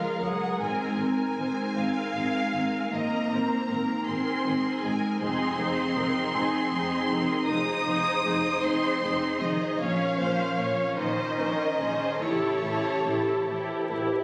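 Cinematic and moving, this hopeful passage in a rubato 6/8 is carried by a lush, expressive violin section on the melody over a dark, woody second violin line, with a rich viola section sitting up front in the accompaniment. A ringing harp adds fingerpicked arpeggios in the background, while smooth, even cellos and double basses, the basses entering at 0.2 s, hold the low end with vibrato. The sound is heard as if captured on a phone in a room with club reverb, vinyl crackle and compression, and the music is cut from a longer piece.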